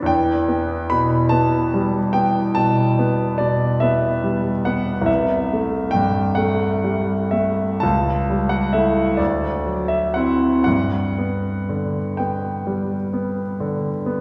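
A lush concert-hall reverb, heard from further back in the room, surrounds a clear, polished grand piano that still sits intimate and up front, with deep bass and the noise of its action audible. This tender, dreamy romantic nocturne for solo piano moves in a rubato 12/8, its harmony drifting from E minor through A minor and a dominant-flavoured D9 before settling on G at 10.7 seconds. It is an excerpt cut from a longer piece.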